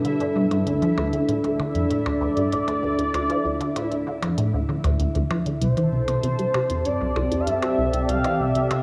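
This short excerpt of sequencer-driven space music opens with a squelchy, up-front blip pluck riff, its detuned sawtooth tone soaked in phaser, ensemble chorus, tape grit and analog delay. Alongside it, a sweeping resonant pad holds sustained chords with slow filter swells and chorus, while a bubbling texture of random filter steps shimmers higher up in built-in and shimmer reverb. Clicky electronic hi-hats and percussion blips, tape-toned and echoed by analog delay, sit quietly in the background of the straight 4/4 pulse. The harmony moves from G to Dm, then settles on Cadd9 at 5.6 seconds, just as an expressive portamento lead enters with a smooth, mellow, vibrato-laden sawtooth line carried by analog chorus, shimmer reverb and delay. The whole mix sits in a wet echo chamber, giving the mood a mysterious, hypnotic drift.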